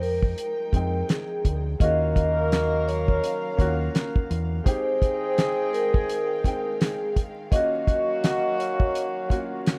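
A cloth-damped, thuddy drum kit sits up front with a fat snare, tight kick, handclaps and hi-hat, swinging at 84 BPM under a tough, moody boom-bap hip-hop groove in Eb dorian, cut from a longer piece over a rough home-demo mix with vinyl crackle. A metallic, ringing vibraphone with slow motor vibrato carries the melody through delay and plate reverb, while a dark, intimate grand piano with audible action noise and soft-attack, bowed sul tasto strings hold Fm9 and Ebm9 chords beneath it. A deep, round dub bass drives the low end until 4.6 seconds, and a mellow, punchy horn section adds distant, roomy stabs from 1.8 seconds onward.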